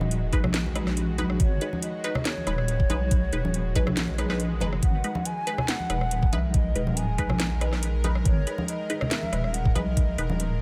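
Deep dubstep at 140 BPM in 4/4, moving in a half-time feel with a light swing on the sixteenths, this heavy, dark excerpt sits on a G# minor chord throughout. Up front, a deep, soft wobble bass with a rounded sine-and-triangle tone and chorus anchors the low end, while a knocking, tape-warmed electronic kick hits hardest in the mix from 0.3 seconds. A garage drum kit adds a cracking snare, rim clicks and metallic hi-hats, and bright congas played with soft hands sit in the background in a small room. A filtered dub chord stab, muted yet resonant with a wave-folded, detuned edge, carries phaser, cassette tape colour and dub echo, above a tense, string-like bowed drone that holds sustained chords with slow attack, vibrato and its own reverb. Over it all, a breathy low ney with a reed-cane character and gentle vibrato plays the melody through dub echo, and a brief electronic swell appears in the background at 4.2 seconds, the whole excerpt framed by a digital ambience.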